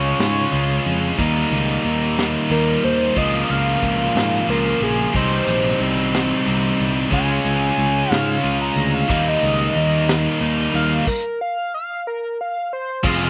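A screaming, saturated synth lead with a gritty sawtooth edge and chorus plays a solo from the first second of this restless, cool indie rock excerpt at 61 BPM in a slow 6/8, backed by a biting overdriven guitar, a bright scooped high-gain guitar, a growling overdriven fingered bass and an airy acoustic kit with a tight kick and bundle sticks. The chords move through Db, Eb, Bbm/Db and Cm7 before the band stops at 11.1 seconds, and a buzzy vintage combo organ with heavy vibrato appears faintly in the background at 13.0 seconds. The sound is dry and up front, with only slapback echo on the guitars and lead.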